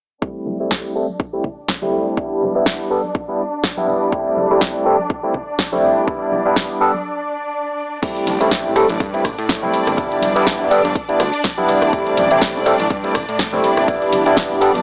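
Sensual and funky, this filtered disco house excerpt at 123 BPM in A minor swings on a barky, lightly overdriven tine electric piano up front, soaked in phaser and pumping against the kick, with a lush, bowed violin section holding sustained chords, a punchy electronic kick and house kit with punchy snare, bright hats, rim clicks and crash, and close tambourine and congas in the background, all moving through Am7 and Em7/G under a filter sweep that runs to a break at 7.1 seconds before a fat, detuned sawtooth bass arrives at 8.3 seconds, the whole thing carrying a gritty, small-speaker hardware sound.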